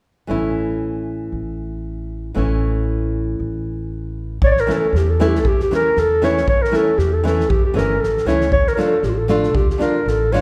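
Balkan folk in a wedding-band style, this restless, virtuosic excerpt moves at 117 BPM in a swung 2/4 in A phrygian dominant, opening with fingerpicked classical nylon-string guitar up front over woody pizzicato upright bass on steel strings. At 4.4 seconds a dark, smooth-topped clarinet takes the solo melody in a classical manner, joined by a loose acoustic kit with a fat snare and punchy kick, as the harmony shifts from A to Dm at 8.5 seconds. A moderate reverb lends the sound the spacious air of a church or concert hall.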